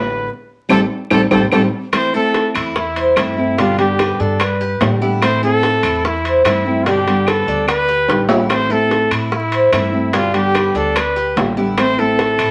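Vinyl crackle and moderate studio reverb frame this nostalgic, danceable Cuban son and guajira excerpt in A minor at 146 BPM, where an intimate, breathy trumpet with vibrato carries the solo melody up front over fingerpicked classical nylon-string guitar with audible finger squeak, bright metallic tres arpeggios on doubled strings, and a dark, thumpy pizzicato upright bass, while tight high-tuned bongos, woody claves and ringing metal-shell timbales join at 0.7 s during an opening band accent, with a drum fill at 8.1 s as the chords sway between Am and G.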